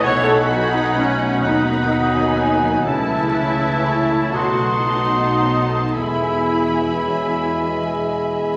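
Opening on full orchestra at once, this slow, rubato romantic movement in 6/8 unfolds a lyrical, warm mood as a lush, vibrato-rich violin section carries the melody over a second violin line, a hollow flute, an oboe and a mellow, roomy clarinet, while an intense, up-front viola section accompanies, ringing harp arpeggios flow, a dark trumpet section adds stabs, distant dark horns and a very quiet bright trombone section hold sustained chords, and cellos and distant double basses anchor the bass, all in a recital-hall reverb with vinyl crackle through a short passage moving from B to E.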